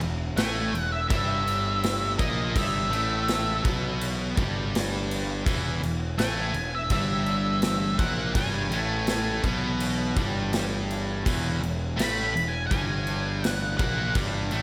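A quiet-loud alternative rock passage opens on an E chord, with a big rock drum kit up front, its punchy kick, medium-tuned snare and bright crash cymbal sounding in a studio room. A cranked stack guitar with overdrive and spring reverb and a second, distorted electric guitar set back in the mix with slapback echo both play a low, picked riff, while a fuzzy, overdriven picked bass sits up front and anchors the bottom at 83 BPM in straight 4/4. Beneath them, a very quiet vintage string machine voiced as cellos holds slow-attack, sustained chords with a sawtooth, sub-octave body and ensemble chorus. At 0.4 seconds a dark, octave-fuzz lead guitar with distortion and slapback echo enters with a high melody that carries on until 14.1 seconds. The mood is bittersweet yet anthemic, and the whole passage is a single section cut from a longer piece, lightly treated with reverb.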